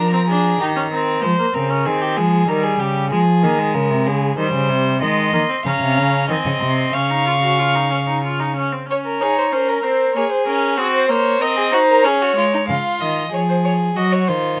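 Contemplative yet driving, this short passage from a longer baroque-style fugue for string quartet moves at 95 BPM in a straight 3/4, centred on D-flat major. The first violin carries the melody with a dark, nasal, somewhat distant gut-string tone, speaking briefly at the start before falling silent and returning at 5.0 seconds to lead through to the end. Beneath it, the second violin sits up front with a warm, lightly vibrato-tinged period sound, weaving a second line from beginning to end, while the viola fills in the accompaniment with a rich, reedy voice from a slight distance until 12.7 seconds. The cello anchors the bass with a dark, present tone, dropping away at 8.5 seconds as a contrasting middle section unfolds over Bbm9 and rootless Ab7 harmonies, then rejoining when the opening material returns. Close, detailed microphones and a touch of reverb keep the gut-string textures intimate and clear.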